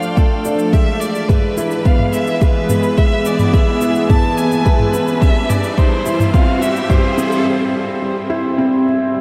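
A soft, mellow felt-muted upright piano riff with audible action noise and analog delay drives this cinematic, hypnotic piano and strings electronica build-up at 107 BPM from the very start, sounding together with a focused, distant bowed violin melody with vibrato and its own delay, a thick detuned sawtooth unison pad with chorus and sidechain pumping in the background, and overdriven electronic shaker and toms. A deep, layered, up-front kick drum enters at 0.2 s, a background riser arrives at 3.7 s, and the piano plays on alone until 9.2 s, all within a dreamy mix soaked in huge ambient reverb.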